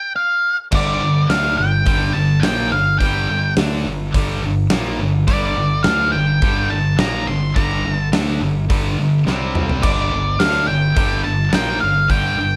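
Cathartic and brooding, this 106 BPM quiet-loud alternative rock fragment in G minor opens with a dark, up-front octave-fuzz lead guitar carrying the melody alone with slapback echo before, at 0.7 s, a scooped high-gain riff guitar, a thick fuzz guitar sitting in the background, a growly picked electric bass and a big-room rock drum kit with a punchy kick and rolled-off top crash in together, the drums breaking into a fill at 9.3 s under light reverb.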